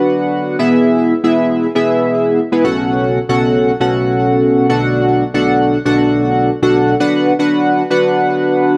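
Lightly reverberant digital ambience surrounds this bittersweet yet confident pop excerpt, where a glossy, full-bodied retro polysynth plays alone, up front with chorus and digital delay, its sawtooth, square and pulse-wave tones, sub octave, pulse-width modulation and filter sweep cycling through Bm, E/B, F#m/B and D/B before returning to Bm at 7.0 seconds.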